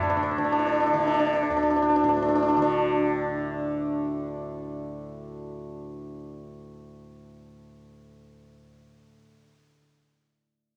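Set in a straight 7/4 at 138 BPM and tuned slightly sharp to A4 = 441 Hz, this fragment of a longer Indian classical piece carries a longing, introspective mood. An up-front hammered santur rings out a close-set melody between D4 and E4 over a bright, buzzing tanpura drone spanning D2 to D3, both parts colored by cassette tape. The santur stops at 6.4 s, leaving the softly plucked tanpura to sound alone until 9.7 s, all within a light reverb in this home cassette recording.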